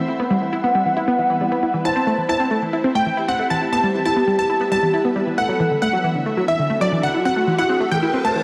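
A straight 4/4 trance pulse at 136 BPM carries this euphoric, bittersweet passage in E minor, cut from a longer piece, as a punchy, detuned supersaw stab takes the melody from 1.9 s over lush unison pluck arpeggios, a velvety lead with chorus, vibrato and tape echo as a second line, and a shimmering, ethereal pad holding sustained chords with granular, warbling character. A background baby grand piano adds a natural second line with delay from 1.8 s, while an electronic riser creeps in at 6.2 s over chords moving from Em through Am and Dadd9. A lush hall reverb with a 2.5-second tail bathes the mix.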